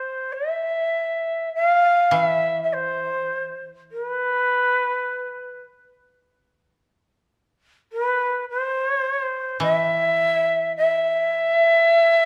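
Lightly reverberant and spare, this calm, austere fragment of Japanese traditional music unfolds in free rubato, with a breathy, bright bamboo shakuhachi carrying the melody up front in a straight, soft-attacked tone while a quieter, dry and woody fingerpicked koto enters at 2.1 seconds to accompany it on a low E3.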